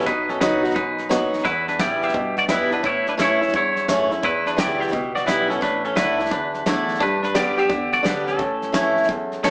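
A twangy electric guitar carries the melody up front, its bright, clean, compressed tone picked across this heartfelt, easygoing stretch of honky-tonk and classic country cut from a longer piece. Beside it, a boxy acoustic guitar picks a swing-style accompaniment, also up front, while an upright bass sits in the background with a woody, growly, thumpy pizzicato. A soft brush drum kit with a punchy kick, medium-tuned snare and hi-hat keeps time at 173 BPM in 4/4 with a 65% swing on the eighth notes. The chords move through B, Em, A, Asus4 and G, arriving back on A at 8.4 seconds. A plate reverb wraps the band, which sounds heard from further back in the room through a small speaker.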